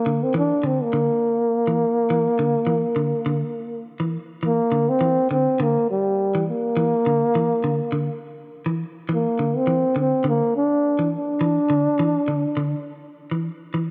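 A bucket-muted trombone opens this hypnotic, funky afrobeat fragment with a veiled, breathy solo melody full of vibrato, placed up front with a soft, whispered intimacy and pop phrasing until 12.9 seconds, while a clean, picked electric guitar enters at 0.1 seconds with up-front arpeggios on a single rootless minor chord, all under a moderate plate reverb and a lightly swung sixteenth-note feel.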